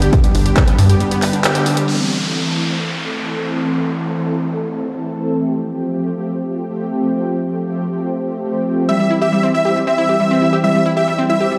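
A straight 4/4 pulse drives this euphoric uplifting trance excerpt, opening with a punchy, tape-warm electronic kick and an analog drum machine of crash, handclaps and low-pass-filtered hi-hats. Alongside them come a tight, wave-folded sequencer bass and a lush, detuned unison pluck with delay, all pumping against a silky, evolving string pad with ensemble chorus that sustains throughout. After a break and a band accent, a downlifter enters at 1.9 s, and at 8.9 s the pluck returns beneath a huge, thick, compressed supersaw melody with vibrato and tape echo, the whole sound bathed in a spacious scoring-stage reverb.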